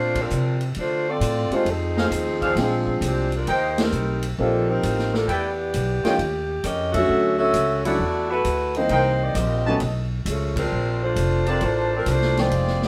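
Swung eighth notes in 4/4 drive this joyful, brassy big band jazz excerpt, where a mellow saxophone section with light vibrato carries the melody up front over a natural-sounding baby grand piano, a woody, thumpy pizzicato upright bass and a drum kit of boomy kick, snare, hi-hat and ride, while a distant trumpet section adds stabs from 2.0 s to 12.0 s and the band hits shared accents inside a moderate stone-room reverb.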